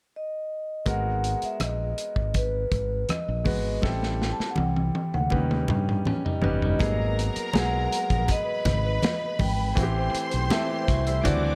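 Light reverb and studio ambience frame this bittersweet, silky stretch of lush 1970s-style soul, cut from a longer piece, where a ringing, metallic vibraphone with medium mallets carries the melody from 0.2 seconds. At 0.9 seconds clear, natural grand piano chords enter alongside an overdriven fingered electric bass and a dark, smooth acoustic drum kit with a tight kick, the bass and drums sitting up front, with congas struck by hard hands in the background, and the drums play a fill from 3.8 seconds. At 6.1 seconds a slightly broken-up, picked electric guitar riff joins in the background, and at 6.8 seconds a distant, focused string section adds a bowed second line with vibrato as the chords return to G#m9.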